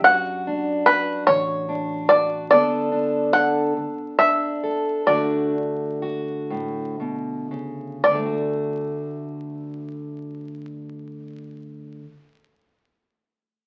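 A bright, twangy banjo carries the melody up front over a fingerpicked, plugged-in steel-string acoustic guitar, while a dark, round electric bass sits low beneath them until it drops out at 2.5 seconds. This nostalgic, peaceful folk fragment moves in a slow 6/8 at 36-48 BPM in D major, easing through D/F#, Gadd9 and Bm7 and slowing down between 2.5 and 8.0 seconds before settling back on D. The sound has the crackle of a very old 78 rpm record and the wet reverb of a club.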